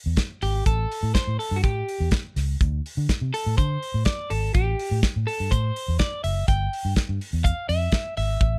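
Driving and danceable, this dry disco piece at 124 BPM in A minor sets a dark, foam-muted, round fingered electric bass and a damped 70s kit of tight kick, medium-tuned snare and hi-hat up front, while a twangy, slightly broken-up, picked electric guitar accompanies a clean electric guitar solo that runs from 0.0 s over chords moving from Em through A5, D5 and Am7 to Em/G.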